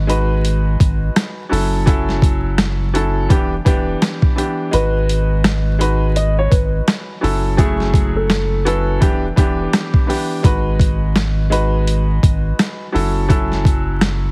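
A deep, round dub sub bass opens this moody, tough boom-bap hip-hop excerpt at 84 BPM with a 16th-note swing in G# phrygian, joined almost at once by a clear baby grand piano run through cassette tape coloring and filters, and a gritty, pitched-down sampler-style kit with a thumpy kick and medium-tuned snare, all moving through G#m7, F#m7 and Em7 chords. From 4.7 to 9.2 seconds, a dark, woody upright piano carries the melody through filtering and digital delay, while the kick drops out briefly at 4.7 seconds. The mix is dry and heavily compressed like a radio broadcast, with vinyl crackle underneath.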